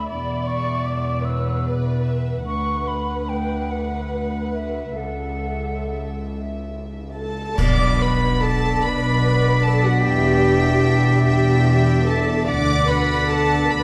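A dark, roomy orchestral sound with moderate reverb carries this sorrowful, moving excerpt of cinematic film score in a rubato 6/8, where a soft-edged, floating violin section sings the melody over a hollow concert flute line, woody vibrato violas, a rich cello section and a smooth, low double bass section. A cymbal swell with clash cymbals and concert bass drum rises at 5.0 seconds, and at 7.6 seconds the full ensemble accents the return of the opening material as a mellow, distant French horn section enters with sustained chords and a clear oboe adds a quiet second line. From 8.8 seconds a second violin line drifts in the background, deepening the tender, mournful close.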